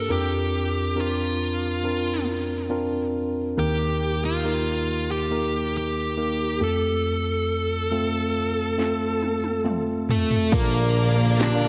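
A hopeful, emotional pop ballad excerpt opens with a dark, overdriven lead guitar melody over bright tine electric piano in a dreamy, reverb-soaked hall, then a punchy, overdriven electronic drum kit enters at 8.8 s with a fill before the music lifts at 10.5 s, bringing in intimate bowed cellos, distant lush strings with vibrato, a mellow tuba bass, a barely audible fingerpicked acoustic guitar and, just at the end, a jingly tambourine.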